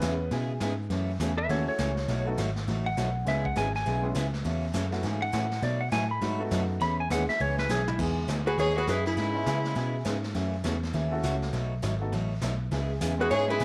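Down-home and swinging, this western swing country excerpt rolls along with a lightly swung eighth-note feel. A bright, full-bodied acoustic guitar and a woody upright piano sitting in the background carry the accompaniment, while a dark, round, foam-muted electric bass sits up front beneath them. A distant brush kit with dark cymbals and a tight kick keeps time in a roomy studio space. A twangy, clean lap steel guitar takes the spotlight with a slide solo from 1.4 s, and a drum fill at 7.4 s leads into the next section. At 8.5 s a dark, compressed hollow-body jazz guitar with slapback echo carries the melody, joined by a clear, intense fiddle with light vibrato, all within a small room and light reverb.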